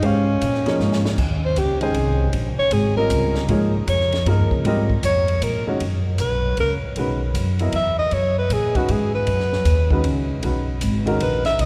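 A vast cathedral reverb surrounds this fragment of modal jazz, giving it the long, hanging air of a church or concert hall. In a swung 3/4 with a hypnotic, open mood, a breathy alto saxophone takes the solo up front, its whispered, intimate tone carried by vibrato and a soft attack. A baby grand piano comps beneath with a natural, short-sustained touch, while a pizzicato upright bass with steel strings sits prominently, woody and warm. A compact cocktail drum kit stays dry and lower in the mix, with dark cymbals, a high-tuned snare and a punchy kick, and adds a brief fill between 0.8 and 1.2 seconds. At 5.8 seconds the harmony moves from one suspended chord to another, shifting the ground under the saxophone's line.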